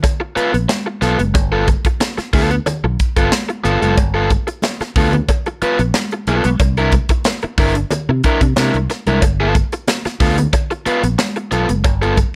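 Playful and strutting, this short funk excerpt moves in a straight 4/4 over a dry, close sound with little reverb. An overdriven, compressed electric guitar sits up front with picked lines in a midrange span, while a crisp fusion drum kit supplies punchy kick, a medium-tuned snare and hi-hat with an airy, polished studio-room sheen. A fingered electric bass, direct and amped, joins at 0.4 seconds and ranges from F#1 to C3. Ringing, high-tuned congas played with soft hands enter at 0.7 seconds and stay in the background alongside a metallic, close cowbell. The harmony rests on G9, moves to C9 at 6.6 seconds, and returns to G9 at 9.2 seconds, holding there until the cut ends.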